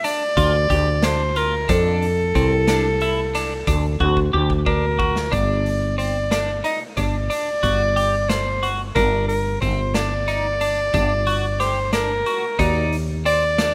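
Set in a straight 11/8 at 182 BPM, this tense, brooding progressive instrumental, tuned to A4 = 444 Hz and cut from a longer piece, sets an up-front, mellow soprano saxophone melody with light vibrato and tape echo over clean, compressed twelve-string electric guitar arpeggios (also with tape echo), a gritty, saturated garage drum kit with a punchy kick and a pumping stone-room sound, a woody, growly fretless bass entering at 0.4 s with subtle chorus, and a dark hollow-body jazz guitar murmuring in the background from 1.7 s, before a drum fill leads into G harmonic minor at 5.3 s, all in a rough home demo mix with light reverb.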